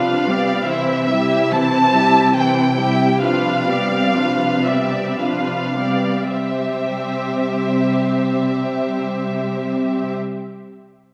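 A slow, romantic classical movement for muted strings, lyrical and tender in a rubato triple metre, heard as a brief cut from a longer piece that slows over its first 6.3 seconds. Up front, a lush violin section sings the melody with vibrato and soft attacks, while a distant chamber violin section carries a second line, a close viola section supplies the accompaniment, and a cello section anchors the bass on a low C. Every part is played con sordino, giving the strings a dark, veiled colour, all set in the generous reverb of a scoring stage as the harmony rocks between G7 over C and C major.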